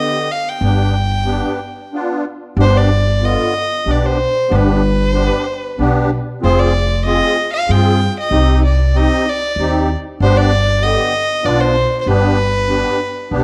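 A single bowed violin leads this bittersweet, soulful klezmer fragment, playing the melody up front with a soft attack and a pure, floating sul tasto tone. Beneath it, a musette accordion fills out the accompaniment with a reedy, shimmering wet tuning, close-miked and dry yet full in body. A pizzicato upright bass on steel strings joins at 0.6 seconds, sitting up front with a woody, acoustic sound. The music is in 3/4 with a straight feel in G phrygian dominant, starting around 95 BPM and speeding up throughout. The harmony moves from G to F minor, C minor and back to G. A moderate recital hall reverb and a dark, warm production give the trio a soft glow.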